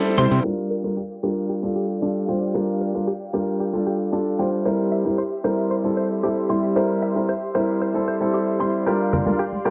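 Nu-disco at 114 BPM in G dorian, this short excerpt from a longer piece feels sleek and sensual, moving from Gm7 to C7 and back to Gm7 at 8.9 seconds after a band accent on the downbeat. A clear, polished grand piano sits up front with audible action noise, carrying the accompaniment through tape echo. Behind it, a dark studio string section holds sustained chords sul tasto with light vibrato and a soft attack, while a bright, twangy clean electric guitar, recorded direct and compressed, plays a picked riff in the background through analog chorus, tape echo and a low-pass filter that sweeps from 0.4 seconds onward. Electronic hi-hat and shaker lay down metallic, overdriven hats re-recorded in a large room, and tambourine and congas played with soft hands add acoustic brightness only at the opening and again from 8.9 seconds. A moderate plate reverb with digital ambience and a low-pass filter shape the mix.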